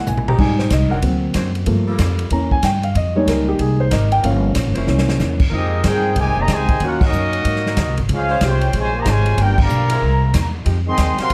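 Big band swing in F minor at 187 BPM with a sultry, swinging mood, this brief cut opens on a natural-toned grand piano leading over woody pizzicato upright bass, a punchy, airy drum kit with fills at 0.1 and 4.9 seconds, and bright, vibrato-laden saxophone chords, before a mellow, distant trumpet section takes the melody at 5.5 seconds over a trombone second line with light vibrato, jazz-rich chords such as Fm9, C7b9 and Dbmaj7, band accents, and a dark production with light reverb.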